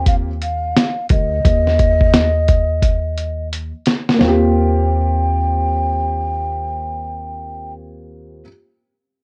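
A breathy, hollow concert flute with a straight tone carries the melody over a dark, intimate upright piano with audible action noise and a woody pizzicato upright bass, all up front in this cool, warm jazz-hop fragment in Eb major at 87 BPM with a swung 16th feel. A compressed, muffled sampler-style kit with a thumpy kick and fat snare comes in at 0.1 s, plays a fill from 2.8 s and stops at 4.4 s. The flute carries a cassette-tape color, the home cassette recording sits in light reverb, and the harmony moves from Eb69 through a chordless stretch at 1.4 s to Eb6.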